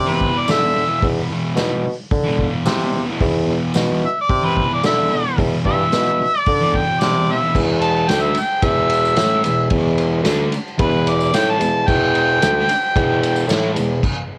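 Swaggering and raw, this garage rock cut from a longer piece moves at 111 BPM in a straight 4/4, settling into E minor at 7.5 s. An overdriven, tape-saturated harmonica leads with mellow, scooped notes and light vibrato, over a soft-attacked classical-style bassoon holding the bass line and a double-tracked fuzz guitar riff. Alongside them, a vintage kit with a punchy kick, dark cymbals and a pumping room sound sits beside a jingly, close tambourine in the background, all captured as a lightly reverberant home cassette recording before a stop at 14.0 s.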